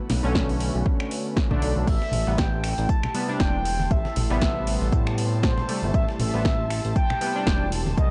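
A dry, gritty hardware sound frames this moody deep house groove, where an up-front overdriven electronic kick and a punchy, metallic-hatted house kit with finger snaps and crash sit over a smooth, evolving synth bass with tube saturation, close acoustic congas, detuned vintage analog key stabs with chorus and delay, and a soft breathy pad pumping in the background, until at 1.9 s a round horn-like synth lead, a very quiet pitched-up breakbeat sampler kit with tambourine and a lush bowed violin section holding a high note all enter as the chords move from Bm7 to Am7.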